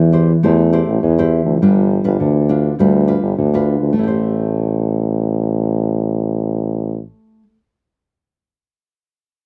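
A clear, vintage-toned tuba carries the bass up front with scooped notes and a pop-style solo feel, giving this short excerpt of lively, yearning samba and choro in A minor at 102 BPM its character. A full-bodied nylon-string guitar is fingerpicked in a deep classical manner alongside it, finger squeaks audible, moving between Am7 and G7 before returning to Am7 at 4.0 seconds. Close, detailed microphones and light reverb keep both parts present; the tuba stops at 7.0 seconds and the guitar rings on alone until 7.6 seconds.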